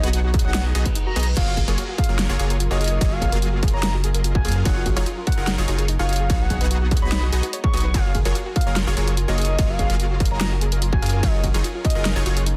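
Euphoric and bright, this half-time future bass excerpt sets a mellow, octave-layered synth lead melody with chorus, delay and sidechain pumping over punchy, detuned supersaw stabs, a dark, soft pluck arpeggio with tape echo in the background, very quiet lush bowed strings and a thick, saturated sub bass up front, all driven by a dubstep kit with a huge snare and bright hats plus a distorted electronic kick that drops out at 1.0 seconds, just after a reverse cymbal sweeps in at 0.9 seconds, in a dry, dense, heavily limited mix.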